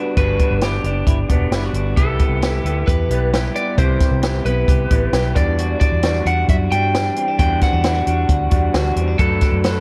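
This short cut from a longer jangly indie pop piece opens at once on three electric guitars. A lightly driven, compressed lead carries the melody through an analog delay, while two picked guitars through a small old amp fill in chords and arpeggios, one twangy and lo-fi, the other slightly broken-up and warm. At 0.2 s a foam-muted fingered bass and a compact cocktail drum kit join. The bass is round and punchy, and the kit puts hi-hat, a tight kick and a high-tuned snare up front with a natural booth sound. The tempo is a straight 133 BPM in 4/4, and the mood is bright yet nostalgic, with the harmony moving from Gmaj7 to Cmaj7 and Em9 before touching Bm7 at 9.2 s. Light reverb and small room ambience frame a dark, warm production.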